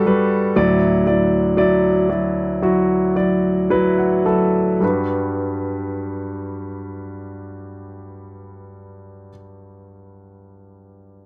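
This dry, close recording has a 1970s studio character, with light reverb around a concert grand piano that sits up front and intimate, its action noise audible beneath the notes. The short fragment is a tender, emotional pop piece in G major and 4/4, moving at a slow, straight 53-60 BPM. The piano is the only part, playing accompaniment from 0.0 to 11.3 seconds across a range from D2 to A5, with deep bass and long sustain giving each chord a polished, clear ring. The harmony moves from Gmaj7 to Dadd9 and returns to Gmaj7 as a new section begins at 4.8 seconds. Over the opening seconds the tempo slows, and a piano fill arrives at 2.6 seconds, carrying the music into that return.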